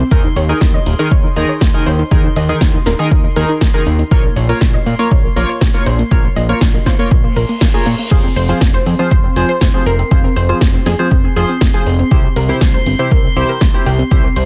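A dense, heavily limited modern master in a digital ambience carries this dreamy, driving progressive house excerpt at 120 BPM in F minor: an overdriven, punchy kick sits up front beneath a deep house kit of metallic hats, snare and crash re-recorded in a large room, while a fat, nasal, detuned bass, bright chorused analog pluck arpeggios with tape echo, glossy retro polysynth stabs tinted by cassette tape and ring modulation, and a glassy harmonics texture drifting in the background all pump to the sidechain, with a reverse cymbal at 7.3 seconds as the chords move from Ebsus4 through Bbm and Fm to C.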